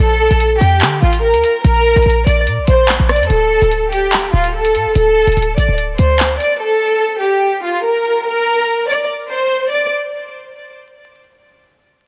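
A half-time drill groove at 145 BPM in 4/4 runs from 0.3 to 6.5 s, its electronic kit of metallic hi-hats, handclaps and rim clicks riding under a punchy, tight 808-style sine bass with a noise layer and fast, decaying attack that sits up front and drops out just before the drums. A close, smooth studio violin section carries the D minor melody with even, bowed vibrato, filtered and touched by delay, and holds on alone until 9.9 s. The mood is cold and ominous, with little reverb, a dense, heavily limited master and a layer of vinyl crackle, and the piece is cut from a longer work.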